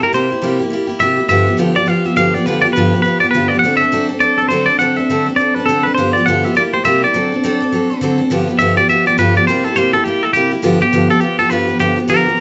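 A swung, rollicking rock groove drives this upbeat fragment of a longer piece, where a twangy, compressed electric guitar carries the melody up front over a bright, full-bodied steel-string acoustic picking dominant-seventh chords beneath, until the clean electric steps into a solo at 8.3 seconds, all captured as a band playing live in one roomy studio with a soft-edged top end.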